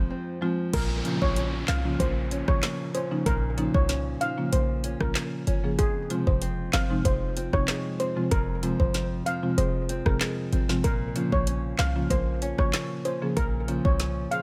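A shimmering steel pan lead with digital delay carries the melody from 0.7 seconds in this tough, sultry dancehall excerpt at 95 BPM, moving between F minor and B-flat minor over a punchy, tight 808-style bass, an up-front electronic afro-pop kit with deep kick, woody snare, metallic hats and handclaps, a buzzing, dry marimba, a small, dark fingerpicked nylon-string guitar playing arpeggios, and a brief electronic downlifter that ends at 5.8 seconds.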